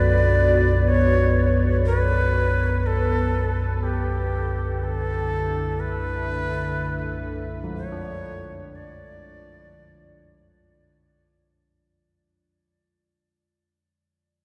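Drenched in a huge, dark reverb, this cavernous dark ambient drone unfolds in free time, cut from a longer piece and fading out from 1.2 seconds to 11.7 seconds. At the bottom, an ominous, rumbling drone sits up front, its nasal, detuned tone colored by ring modulation, subtle chorus and slow, long-sustained swells. Above it, a moody pad holds deep chords with a warbling, vintage character, thickened by chorus and a sub octave, moving from Bm to Dm at 3.8 seconds. An airy, end-blown shakuhachi carries the expressive melody up front, its bright, straight tone marked by breathy chiff and a tape echo. Very quietly underneath, mellow bronze carillon bells ring out soft arpeggios until 13.8 seconds, while a pure, close-miked quartz singing bowl adds a meditative, slowly beating texture, leaving a desolate mood.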